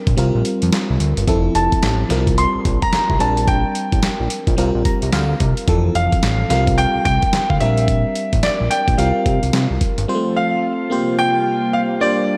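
A glassy, bell-like FM electric piano with chorus and slapback echo opens this flirty, upbeat new jack swing groove at 109 BPM, joined at once by a fat analog bass and a gritty, overdriven sampler-style drum kit of handclaps, hi-hat, thumpy kick and snare, with the kick held back until 1.3 seconds. From 1.6 seconds a clear, polished concert grand piano carries the melody up front, swinging over chords that move between C7sus4, Fmaj7 and Bb69, while the electric piano slips in a fill around 4.6 seconds. At 10.1 seconds the bass and drums stop and a smooth analog pad with chorus and phaser sustains under both pianos, all set in a lush hall reverb that gives this excerpt a big arena sound.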